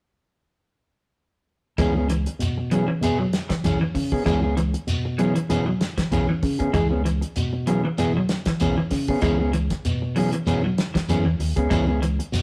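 A lightly swung 16th-note groove at 97 BPM in 4/4 drives this hypnotic afrobeat excerpt in C# minor, as a damped 70s drum kit with a tight kick, medium-tuned snare and hi-hat, a round fingered electric bass and a grainy, distant shekere all enter at 1.8 s and sit on a single C#m7 chord. Over them, a clean, picked semi-hollow electric guitar plays low arpeggios while a dark, up-front mellow electric guitar plays fingered stabs, both stopping at 12.2 s. The rough rehearsal-room sound carries saturation and a moderate stone-room reverb, and the drums stay dry with a rolled-off top.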